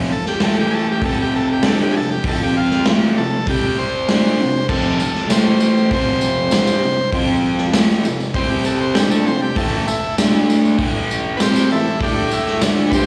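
Heard live through a venue's PA with a light recital-hall reverb, this raw, swaggering garage rock excerpt in A minor at 98 BPM sets a crunchy, double-tracked overdriven guitar riff with slapback echo up front against a punchy, dark-topped drum kit, while a buzzy vintage combo organ takes a solo melody bathed in spring reverb and slapback, and a jingly tambourine joins in the background at 5.0 seconds.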